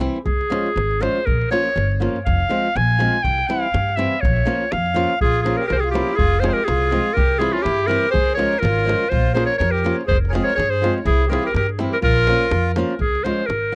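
Bittersweet and fiery, this excerpt from a longer Balkan wedding-band tune in a swung 2/4 gathers speed throughout, as a bright, classical-style clarinet with tape echo leads up front over fingerpicked flamenco guitar on fresh strings, a woody, thumpy pizzicato upright bass and a deep davul. The clarinet carries a solo through the opening 5.2 seconds, after which a reedy, full accordion with slow beating joins as a second line until 12.7 seconds. The close, dry 1970s-style studio sound keeps every part present and immediate.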